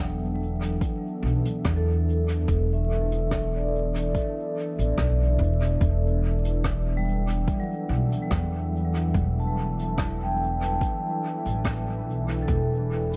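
A woody, growly upright bass sits up front, its pizzicato notes anchoring this meditative, spacious ambient dub piece in E minor at 72 BPM, with a light 16th-note swing. Around it, a vibraphone played with medium mallets spins dark, metallic arpeggios whose ringing tone carries a slow motor vibrato and trails through analog delay. A detuned sawtooth pad with a soft attack and long release holds sustained chords under a gentle chorus. An airy brush kit enters at 0.6 seconds with hi-hat and rim click soaked in dub echo, followed at 0.8 seconds by a deep, layered, tape-warm electronic kick. The harmony rests on Em11 before shifting to a rootless C/E at 12.5 seconds, all set in an echo-heavy mix with light reverb and vinyl crackle, in a passage taken from a longer piece.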